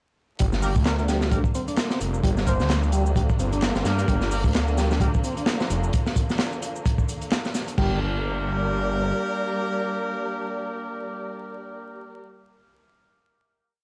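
A crunchy, gritty breakbeat drum kit sits up front, its looped and edited break of tight kick, medium-tuned snare, hi-hat and dark crash cymbals carrying a saturated, rolled-off top at 130 BPM with a 16th-note swing. This energetic, swaggering breakbeat piece in G minor opens straight into a drop at 0.4 seconds, where a thick, swirling detuned saw bass with phaser skips through a syncopated line, and a layered electronic shaker and handclaps add a machine layer over the break. A fat, lightly overdriven tonewheel organ repeats a percussive 16-step riff with key click, chorus vibrato, slow rotary speaker and dub echo. A mellow trumpet with bucket mute, veiled and set in the background with an old record sound, plays short jazz phrases early on, while a distant, roomy horn section punctuates with sparse echoing chord stabs. Beneath it all, a woody, lush string section holds sustained chords with sidechain pumping, and after the drums drop out near 7.8 seconds, the bass lingers until about 9.1 seconds while the strings and horns ring on through a final chord until 12.2 seconds, all over a dry sound with vinyl crackle.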